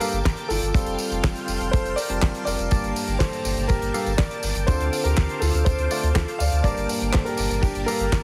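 A dark, intimate grand piano carries the melody over lush string-machine chords treated with phaser and ensemble chorus, opening this melodramatic, bittersweet Italo disco excerpt in G minor at 122 BPM, with the chords moving through Gmadd9, Fadd9 and Dm7. A barky, bright tine electric piano adds stabs, a damped 70s kit brings a fat snare, handclaps, hi-hat and tambourine, and a round analog bass joins at 0.1 seconds before a dry, tight kick enters up front at 0.3 seconds. The piano's audible action noise sits inside a small-room reverb, and the whole mix has a heavily compressed, radio-like sound.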